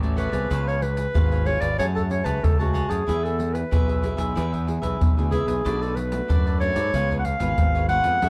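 Dark, warm production with light reverb frames this lively, festive samba and choro fragment, where a soft-attack, classical-style clarinet carries the up-front solo melody from 0.2 s over crisp picked cavaquinho, fingerpicked classical nylon-string guitar, a growly overdriven fingered electric bass sitting forward in the mix, and close acoustic percussion of egg shaker, pandeiro and tight surdo, moving from Dmaj7 through F#madd9 and E to Bm7 and C#7.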